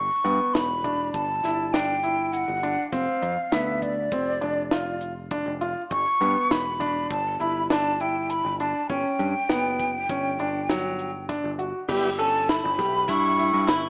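In a straight 5/4 at 100 BPM, this intricate, bright progressive instrumental in G lydian sets a breathy, mellow concert flute melody over picked electric bass, clear piano arpeggios and a dry, dark reggae drum kit with a high-tuned snare, before a lightly overdriven tonewheel organ with slow rotary speaker briefly enters at 11.9 seconds and a clean semi-hollow electric guitar with subtle chorus adds a second line from 12.2 seconds, all in a moderate stage reverb with a small speaker sound.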